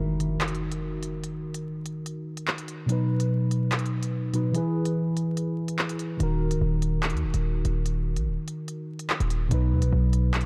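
Set at 145 BPM in 4/4 with a half-time feel, this menacing, dark drill excerpt in Eb phrygian opens with an electronic impact and a mellow, clean tine electric piano treated with phaser, joined at 0.2 s by a crisp, up-front electronic drum kit with handclaps and hi-hat, while a punchy, heavy 808-style bass with a fast attack and decaying sine tone enters at 6.2 s, all within a dry, dark production flecked with vinyl crackle as the chords move from Ebm through B and E.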